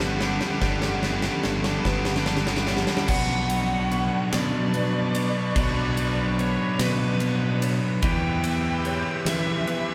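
Cinematic and melancholic, this slow 6/8 post-rock passage in B minor, cut from a longer piece, opens over Gmaj7 with a build-up and drum fill from a huge, hall-like arena kit with a fat snare and bright cymbals, a tight distorted guitar riff, fingered electric bass, a swirling phased analog pad, and a very quiet semi-hollow guitar and felt-muted upright piano with audible action noise, both playing arpeggios. At 3.1 seconds a compressed distorted guitar riff takes over, and a smooth overdriven lead guitar carries the melody over Bmadd9, moving to Em at 8.0 seconds.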